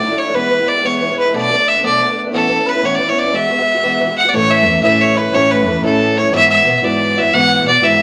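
A rollicking 6/8 Celtic jig at 120 BPM in E mixolydian, cut from a longer piece, puts a bright, biting fiddle up front on the melody with a nasal, earthy edge, a pure wooden flute carrying a second line in the background, and a picked archtop guitar comping up front through chords from E and Bm7 to Aadd9, while a dark, intimate cello with vibrato enters on the bass at 4.3 seconds for the second section, all set in a wet studio reverb.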